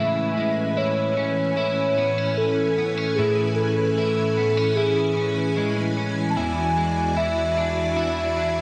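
A straight 4/4 pulse at 75 BPM carries this short, melancholic and hazy dream pop passage, cut from a longer piece and lasting about 8.6 seconds. A warbling, nostalgic lead synth sings the melody from start to finish, its detuned triangle and sawtooth tone full-bodied yet dark, with vibrato, chorus and delay giving it a wavering, vintage character. Beneath it, a string machine voiced as violins holds sustained chords with a soft attack, its bright, shimmering sawtooth sound thickened by ensemble chorus and sitting up front. An electric guitar at the edge of break-up picks arpeggios throughout, slightly broken-up and up front, colored by analog chorus and delay. The harmony rests on Amaj7 before moving to E7 at 6.4 seconds, and a wet scoring stage reverb with a long tail bathes the whole passage in a soft, misty glow.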